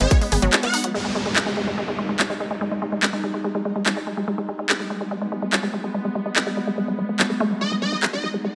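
A straight, driving four-four pulse from a layered electronic drum kit with handclaps and hi-hat carries this hypnotic psychedelic trance excerpt, while a punchy, detuned unison pluck riff with delay and sidechain pumping runs through nearly the whole span over a tense, evolving, granular drone that sustains chords in its own reverb. A tight, mellow sawtooth sequencer bass sounds only at the very start, and an aggressive, swarming rave lead with chorus, phaser and tape echo appears briefly at the opening and again at 7.6 seconds. An electronic downlifter passes from 0.9 to 4.3 seconds, all set in a lush digital hall.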